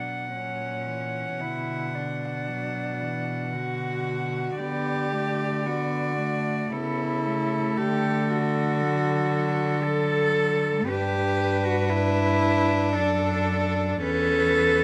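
Classical and lyrical, this elegiac, solemn passage for a cello ensemble moves at a slow 57 BPM in 3/4 with a rubato feel, cut from a longer piece and built on chords like Bm, D, A/C# and G. Four bowed cellos play together across all 14.8 seconds: a rich, floating, pure-toned melody sits highest, an intimate second line with light vibrato and airy bow sits up front, a further rich cello carries the accompaniment, and a warm, vibrato-shaded bass anchors the low end, each with a soft attack and sul tasto colour. Close, detailed microphones and light reverb keep the sound near and clear.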